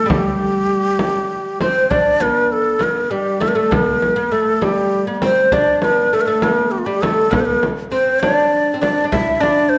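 A breathy, close-miked ney and a woody, fretless oud open this short passage from a longer Arabic maqam piece together, the ney carrying a passionate, stately melody with vibrato and tongued notes while the oud plays a second line on double strings, at 66 beats per minute in a straight 6/8. A deep, large frame drum played with soft hands enters at 0.1 seconds and sits lower in the mix, while the whole ensemble rings in a moderate recital hall reverb. The music moves into a new section at 1.9 seconds and continues to the end of the clip.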